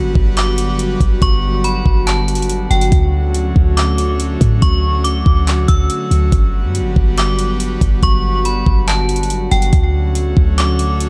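A metallic FM bell carries the melody high above this dreamy, floating cloud-rap excerpt, its inharmonic, warbling tone ringing out from 0.4 seconds through a chorus, a low-pass filter and digital delay. Beneath it, an airy, breathy pad holds sustained chords with a detuned, noise-layered shimmer, its chorus and sidechain pumping giving the harmony a gentle breathing motion. A clean 808-style bass sits deep and boomy with a mellow, sine-like round tone, while a smooth R&B drum kit of knocking kick, metallic hi-hats and handclaps enters at 0.2 seconds with a tape-softened, produced character. The hip hop groove moves at 141 BPM in 4/4 with a half-time feel, drifting between Gmaj7 and Dmaj7 chords. Light reverb wraps the mix in a soft haze, and the tuning sits slightly low at A4 = 436 Hz.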